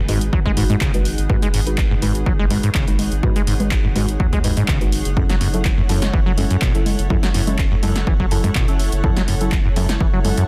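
A straight 4/4 groove at 124 BPM drives this gritty acid house excerpt, built on an overdriven electronic kick and a punchy analog drum machine playing congas, handclaps, hi-hat and snare, with a short room on the snare, clap and hats. In G# phrygian, tuned to A4 = 438 Hz, a squelchy, resonant sawtooth acid bass with a filter sweep carries the riff over a thick, saturated sub bass in the background, both pumping to the sidechain. Dark, wave-folded chord stabs treated with chorus, phaser and tape echo move from G#m7 to F#m7 at 5.2 seconds, while a cloudy, evolving granular pad with a slow attack and its own reverb drifts above in a dense, heavily limited master.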